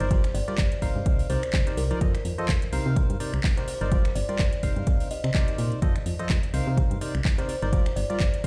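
A hollow, percussive organ stab opens this soulful, energetic piano house excerpt at 126 BPM in 4/4, carrying the riff over a Gm7, Cm9 and F7 progression alongside a round, dark FM bass with a fast attack, both pumping with sidechain and the organ touched by subtle chorus and delay. A house kit of finger snaps, handclaps and metallic hi-hats plays from the start with overdrive and a layered, produced character, its sound re-recorded in a large room. A punchy, tape-tinged analog kick sits up front from 0.1 seconds, anchoring the lightly swung sixteenth-note feel. At 0.3 seconds a buzzing kalimba enters with a woody, airy fingertip pluck, carrying a melody between Bb4 and Eb5 through a delay until 8.1 seconds. The mix feels dry up close yet carries the character of a big sound system playing in a bare room with large studio reverb.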